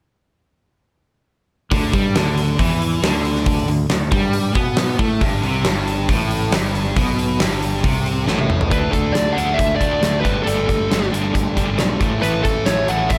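This swaggering, sunny classic rock excerpt opens at 1.7 seconds with the full band together: a huge arena drum kit up front with a fat snare and punchy kick, two picked electric guitars playing the riff, and a growling fingered bass, overdriven and amped. One guitar is crunchy and overdriven with tremolo, sitting in the background, while the other is tight, bright and distorted. At 137 BPM in a straight 4/4, the harmony moves from D5 to Am9/G, and a drum fill at 8.3 seconds leads into a new section. At 8.7 seconds a fuzz lead guitar takes the melody up front, compressed and distorted with analog delay, over chords of D, Gsus2 and A. Beneath it a very quiet, boxy acoustic guitar adds picked swing-style accompaniment, all in a moderate studio reverb until the cut at 13.2 seconds.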